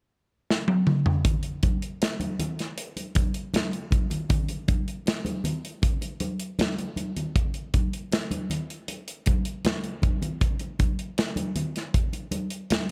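Dry, close-sounding and lush yet smooth, this short slice of a longer soul groove at 78 BPM in a straight 4/4 opens with an up-front, mid-forward acoustic studio drum kit, with its punchy kick, medium-tuned snare, hi-hat and a drum fill from 0.5 to 1.2 seconds, before ringing, soft-handed congas from a small room join at 1.2 seconds and sit lower beneath the rolled-off top of the kit through 12.9 seconds.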